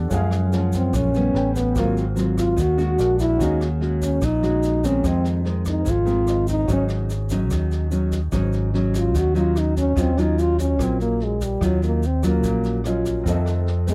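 A dry, close studio sound in a 1970s vein frames this sophisticated, romantic bossa nova excerpt, where a mellow French horn takes the up-front solo melody from 0.8 seconds. Beneath it, a thumb-plucked nylon-string guitar in classical style and an intimate concert grand piano, sitting in the background with audible action noise and deep bass, share the accompaniment. A dark, round fingered electric bass sits up front, while a jazz kit played with brushes adds a boomy kick, a medium-tuned snare and rim clicks, and a grainy, bright tube shaker murmurs behind the band over rich extended chords.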